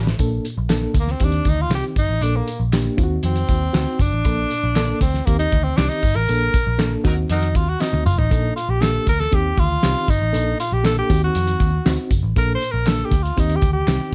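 Uptempo 1960s-style soul in Bb major at 118 BPM, this warm, uplifting excerpt features a breathy, up-front tenor saxophone soloing from 1.0 seconds over a reedy, slightly out-of-tune electric piano with overdrive and medium tremolo, a dark, foam-muted picked bass, a cloth-damped thuddy drum kit with a fat snare and tight kick, tambourine and group handclaps, and brief smooth horn-section entries at 0.0 and 7.1 seconds, all cycling through Bbmaj7, Eb6 and Ebm6 chords under light reverb and vinyl crackle, with a drum fill and band accent around 7.8 seconds.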